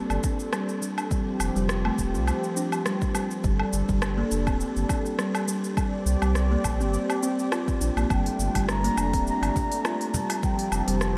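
A warm analog pad opens this meditative, hypnotic organic downtempo excerpt in G minor, its detuned sawtooth chords softened by chorus and tremolo and pulsing with sidechain pumping. Almost at once a round, sine-like sub bass sits up front beneath it, and an organic electronic kit of cabasa, smooth hi-hat, rim click and woodblock joins a deep, layered kick, both overdriven and re-recorded in a large room, at 103 BPM with a light 16th-note swing. A buzzing kalimba plucks woody, hollow arpeggios through a low-pass filter and tape echo, adding a dark, fingertip texture. The chords move from G5 through Fsus2 and Csus2 to Gm7 and Fadd9, and at 8.1 seconds a distant bamboo bansuri enters with a pure, expressive melody, its vibrato carried on tape echo. A snappy cajon with snares makes a brief, close appearance at 9.6 seconds, struck with hard hands, while a huge ambient reverb drenches the mix in a dreamy haze.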